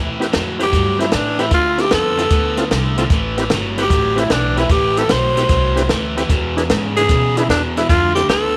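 Soulful and mournful, this swung electric blues shuffle puts a raspy, growling tenor saxophone melody up front from 0.6 s over a bright, overdriven riff on cranked stack guitar, woody pizzicato upright bass, a thick tonewheel organ through a slow rotary speaker in the background, and a dry compact cocktail drum kit with a high-tuned snare and tight kick, heard in a small room with light reverb.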